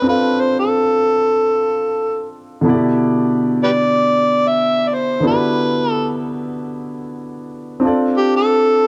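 A dark, warm production with light reverb frames this short soul cut at 93 BPM, with a swung sixteenth-note feel and a silky, smooth mood over chords moving from Dm7 to Em7 and back to Dm7 at 7.8 seconds. Up front, an amplified, overdriven harmonica carries the jazz-style solo melody with a gritty edge, light vibrato, tongue slaps and scooped notes. Beside it, a natural-sounding grand piano plays warm accompaniment, its audible action noise adding a close, in-the-room touch.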